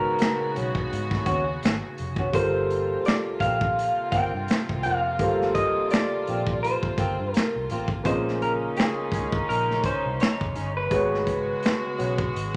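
A slightly broken-up electric guitar through a small old amp carries the melody in this sultry, smooth neo-soul excerpt at 84 BPM, its lo-fi, compressed tone riding a swung 16th-note feel over Abm11, Gm11 and Bbm11 chords. A round, foam-muted electric bass and a mellow, boxy concert grand piano with long sustain play from the start, and up front, a crunchy, saturated breakbeat kit with tight kick, snare, hi-hat and finger snaps enters at 0.2 seconds. A bright, fingerpicked flamenco guitar with audible finger squeak adds a second line from 0.5 seconds, while a distant, reedy string section with a nasal gut-string tone holds sustained chords, all set in a moderate large studio reverb.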